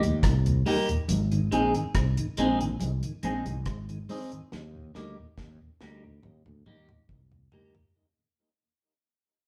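Serious and hypnotic, this short cut from a longer roots reggae piece moves at an unhurried 70 BPM in a straight 4/4, centred on Eb with a shift to Ab at 1.1 seconds before returning to Eb at 4.5 seconds. A growly fretless electric bass sits up front with long, sustaining notes, alongside a deep reggae drum kit whose dry, dark sound pairs a high-tuned snare and tight kick with hi-hat, rim clicks and toms. A clean, picked electric guitar enters at 0.7 seconds, treated with phaser, while a round, mellow tonewheel organ adds key click and vibrato through a slow rotary speaker and dub echo. Very quiet congas with a thick, high-tuned skin and soft hands add a vintage, band-limited texture underneath. The band sounds as if playing live together in one room, bathed in wet studio reverb, and a drum fill runs from 4.5 seconds to the end as the whole passage fades out.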